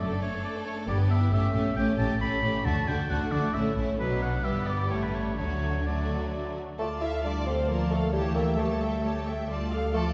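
Heard from further back on a scoring stage with a wet reverb, this lively, spirited classical-period orchestral movement in a quick 3/4 at 134 BPM moves with rubato, turning from D major to D minor at 6.8 s. A rich, smooth violin section carries the melody over a clear, intense second violin line, with lush violas, vibrato-laden cellos and a focused, up-front double bass section, all bowed, while a present solo oboe adds another line until 6.6 s. As the key darkens, a mellow bassoon joins the accompaniment.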